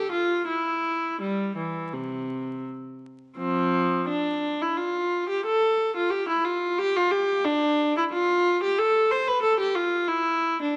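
A single bowed viola with a reedy gut-string tone and light vibrato sits up front in a radiant, dance-like baroque-style suite movement in F major, played in period style with rubato around 81-94 BPM in 4/4, ranging from C3 to C5 across this 10.8-second cut from a longer piece, set in a moderate recital-hall reverb under a vinyl crackle.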